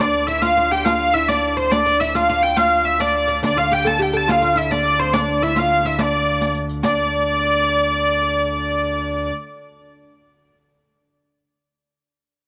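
A straight 6/8 pulse at 141 BPM, counted in dotted quarters and gradually speeding up, drives this ancient, mysterious medieval dance in D minor, where a biting, nasal hurdy-gurdy carries the melody up front, a woody, double-strung oud plays a second line beneath it, a principal-chorus pipe organ holds a low D drone with a hint of chiff, and a close, dry riq adds bright jingles from 0.4 to 7.0 seconds, all set in a moderate plate reverb.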